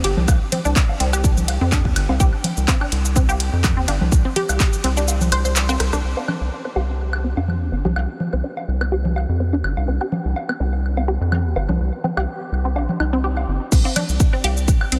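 A punchy, up-front electronic kick drives this clinical, hypnotic minimal techno piece, cut from a longer track, dropping out at 4.7 seconds and returning at 13.7 seconds, while a rubbery, bouncy square bass pumps beneath a squelchy, detuned blip-pluck riff that is coloured by chorus, phaser, 12-bit sampler grit and tape echo, and a filter sweep moves through the middle section, as a minimal click kit with clicky hats, claps, rim clicks, shaker and cymbals is joined by overdriven congas and woodblock in a dreamy, reverb-soaked mix.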